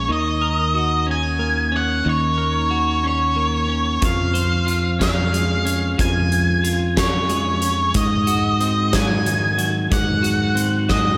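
A dark, fuzz-soaked octave lead guitar sings its melody up front from the opening moment, over clean, compressed twelve-string electric guitar arpeggios and a bright, growly fingered bass, moving through Ebm7, Dbmaj7/F and Ab7 in a slow 6/8 at 61 BPM. A huge acoustic arena drum kit, with a punchy kick and medium-tuned snare, joins at 4.0 s and lands a fill at 10.9 s. The lush hall reverb gives this hopeful, soaring post-rock passage, cut from a longer piece, a big arena sound.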